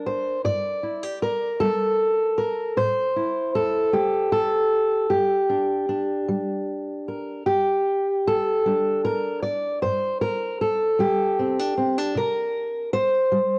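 Intimate and haunting, this short folk fragment is cut from a longer piece and features a lone fingerpicked steel-string acoustic guitar. The guitar sits up front with a dark, woody voice and the dulled character of old strings, its auditorium body ranging from G2 up to D5. Moving in an unhurried, straight 6/8, it opens on a Gmadd9 and passes through Am and Gm. At 7.5 seconds a second section begins on Gsus2 before settling onto a C5 at 12.2 seconds. A light studio reverb frames the home-recorded cassette sound, and the tape coloring on the guitar gives the whole fragment a worn, private quality.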